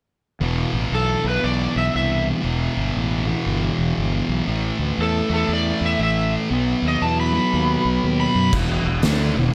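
A thick, double-tracked fuzz guitar riff and a round, overdriven fingered fuzz bass open this gritty, brooding blues rock power trio and southern rock excerpt at 0.4 s, swinging at 118 BPM in 4/4 over Em, A5 and B in light reverb, as a bright slide guitar carries the melody from 0.9 s until an oversized low-tuned drum kit with a fat snare, punchy kick and dark cymbals arrives in a pumping stone room at 8.5 s on E5.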